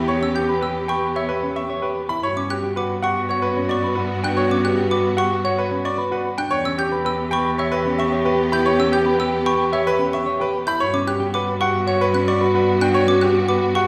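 Minimalist classical pattern music at 112 BPM in E dorian, urgent and hypnotic, sets a brilliant, up-front grand piano melody with audible action noise over a mellow, distant French horn second line, smooth bowed string chords, dark hollow-body electric guitar arpeggios, a focused solo cello bass and sharp, woody xylophone arpeggios entering at 0.2 seconds, all cycling between Em and Gmaj7 in a reverberant recital hall.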